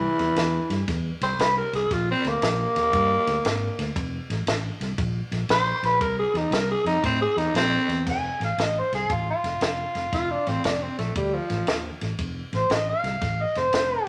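Electric blues shuffle at 117 BPM in 4/4 with a swung eighth-note feel, gritty and swaggering in mood, taken from a longer piece. A growling tenor saxophone leads off with a solo from the start, raspy and breathy with a soft subtone attack and scooped notes in a jazz style, sitting up front over a harmony that moves from C through Bb6, F, Bbsus2 and C6. Underneath, a fingered electric bass gives a round, dark, amped low end while a compact cocktail drum kit plays crash, ride, snare and kick, its dry, natural sound marked by dark cymbals, a high-tuned snare and a tight kick. At 8.1 seconds, as the chords land on F, an overdriven harmonica takes the melody with tongue slaps and scooped notes, amplified and up front, overlapping the saxophone until the horn drops out at 11.8 seconds. A moderate large-studio reverb opens up the space around the band.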